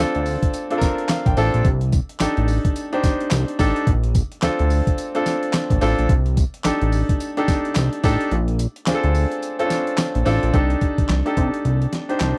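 Punchy and confident, this short new jack swing excerpt rides a swung groove built on a gritty, sampler-style drum kit with a thumpy kick, fat snare, handclaps, hi-hat and tambourine, all overdriven and compressed, with the kick dropping out from 8.3 to 10.5 seconds. A thick, detuned sawtooth bass with a plucky filter sits up front alongside a clear, polished baby grand piano that voices lush major-ninth and minor-six-nine chords and slips in a brief fill at 0.8 seconds. The sound is dry and close, like a 1970s studio session.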